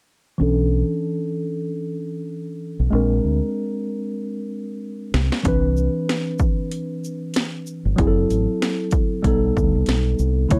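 A worn, slightly out-of-tune tine electric piano sits up front under a low-pass filter sweep, drifting through lush jazz chords from Bm11 to Cmaj9 and a closing B7b13 over a round, dark fingered dub bass in this smoky, mellow jazz-hop excerpt at 95 BPM with a 16th-note swing, until a punchy, layered electronic kit with cracking snare, metallic hats and shaker arrives at 5.1 s alongside a fill, all wrapped in light reverb and a dark, warm production.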